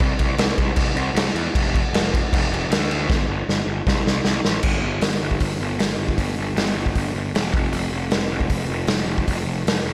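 A raw, up-front garage drum kit drives this short punk rock excerpt at 155 BPM in a straight 4/4, its punchy kick, medium-tuned snare, hi-hat and crash sounding gritty and saturated with a rolled-off top in a bright stone room. Beneath it, a picked electric bass pushed through overdrive and fuzz growls low and close, giving the cut an energetic, rowdy edge. A drum fill from 3.1 to 4.6 seconds leads into a new section, and the dry mix carries little reverb.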